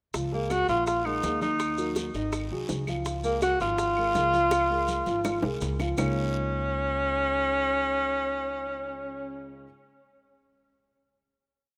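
A rough home-demo mix bathed in a lush hall reverb frames this brief, sunny Afro-Cuban jazz piece in Db major at 164 BPM, where a breathy, vibrato-laden tenor saxophone sits up front with a motif-based solo melody of call phrases. Beneath it, a boxy upright piano with audible action noise plays a montuno in octaves, and a thumpy gut-string upright bass drives a tumbao that anticipates the chords. In the background sit tight high-tuned bongos, very quiet low-tuned congas, woody claves with a two-bar time line, a raspy guiro and grainy vintage maracas; after a drum fill from 4.5 seconds the percussion stops at 6.1 seconds, and the piece closes on a held Db69 chord.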